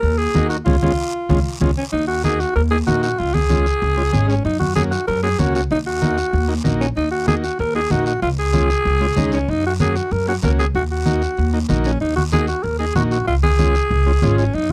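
A straight 4/4 cumbia groove at 190 BPM is carried by low-tuned, thick-skinned congas and a close, dry guiro, giving this short cut from a longer piece a danceable, passionate drive. A band accent hits between 0.7 and 1.9 seconds before the music settles into a steady cycle of Eb minor, Db and Gb chords. Up front, a bright, gritty alto saxophone plays the solo melody with pop-style vibrato. Beneath it, the pizzicato upright bass sounds woody and dark, while a vintage combo organ joins at 0.3 seconds with a buzzy, clean tone and light vibrato. The whole piece has the intimate feel of a 1970s studio session, recorded close with little reverb.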